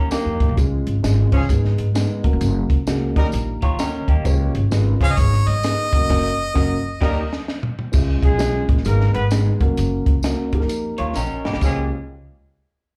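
A bright, close-miked harmonica with light vibrato carries the melody from 5.0 to 7.5 seconds in this joyful, danceable slice of uptempo 1960s-style soul, swinging at 130 BPM in Db mixolydian. Beneath it, a woody, growly pizzicato upright bass and a compact cocktail drum kit with a high-tuned snare and punchy kick sit up front, while a jingly, vintage tambourine adds sparkle. A dark, boxy upright piano with long sustain fills out the accompaniment and takes a fill near the end, and a distant, roomy horn section plays a loose second line. An electric guitar through a small old amp plays a slightly broken-up, lo-fi riff in short bursts, and slapback echo marks the guitar, piano, horns and harmonica. The band hits a shared accent that runs into and through a drum fill, and the sound is that of a live gig heard through the venue's PA, with club reverb.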